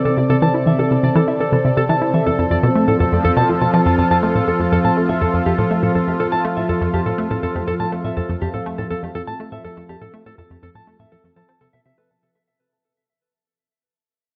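A sweeping, resonant pad of detuned sawtooth and triangle tones with ring modulation and chorus opens this hypnotic, mysterious stretch of sequencer-driven ambient space music, holding bright, full-bodied chords alongside a dark, clean electric guitar playing fingered arpeggios through delay. A tight, driving sequenced synth riff with a detuned sawtooth filter pluck, chorus and delay joins just after, as the harmony shifts from C to F at 2.3 seconds. A moderate plate reverb surrounds the up-front parts, and the whole passage fades out from 4.2 seconds.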